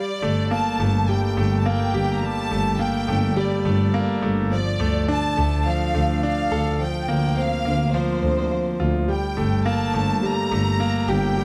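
Piano and strings electronica in G minor at 105 BPM, hypnotic and cinematic, where a bright baby grand piano with audible action noise, long sustain and delay plays an up-front riff, a clear violin section carries a smooth, lightly vibrato bowed melody, and a rich, lush bowed double bass section enters at 0.2 s with close, even support, all moving through Gmadd9, Dm and Bbadd9/D in a dark production with light studio reverb.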